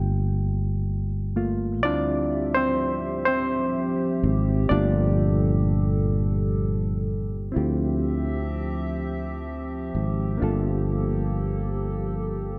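Sultry and late-night, this slow R&B fragment in 6/8 moves at 42 BPM in D minor, drifting between Gm9 and Dm11 chords. A reedy, worn electric piano, slightly out of tune and heard through its built-in speakers, carries the solo up front through 7.5 seconds, while a growly, amped fretless bass sustains low notes beneath it from the start. At 1.8 seconds a hollow, flute-like pad with chorus enters with soft, detuned sustained chords, all wrapped in a dark production with light reverb.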